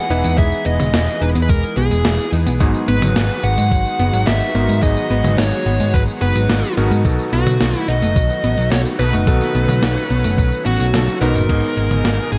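Synthwave in G# minor at 108 BPM, nostalgic and driving, where a dark, overdriven lead guitar carries the melody with delay over a lush, chorused unison pad with 12-bit sampler grit and sidechain pumping, clangy electric grand piano stabs, delayed unison pluck arpeggios, a round, up-front hollow-body picked bass with tube saturation, a tape-warm gated 80s drum machine with gated-reverb snare, crash, hi-hat, tambourine and toms, and a thumpy electronic kick from 0.4 seconds, moving through Emaj7, G#m7 and B7 before a drum fill at 10.9 seconds lands on G#m.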